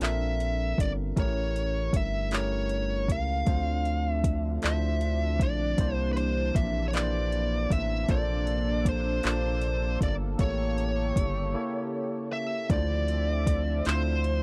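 Late-night and yearning, this slow R&B excerpt in D minor moves at 52 BPM in 6/8. An up-front, smooth overdriven lead guitar carries the melody over a barky, clean tine electric piano, a rubbery, bouncy square bass and an electronic drum kit of handclaps, metallic hi-hat and soft kick. A lush, airy unison pad with chorus and phaser joins in the background at 3.5 seconds, and a break at 11.6 seconds comes before the return to Dm9 in this dry, close, 1970s-style studio sound.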